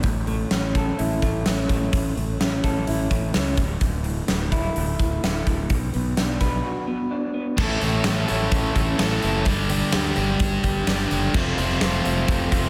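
A lo-fi, slightly broken-up electric guitar picks arpeggios with harmonic tremolo over growly fuzz bass and a punchy, up-front rock kit in a bright stone room, and after a break at 6.6 seconds this restless, cathartic quiet-loud alternative rock fragment shifts at 7.6 seconds into riffs from a biting guitar and a sludgy, dark distorted one, set in moderate large-studio reverb.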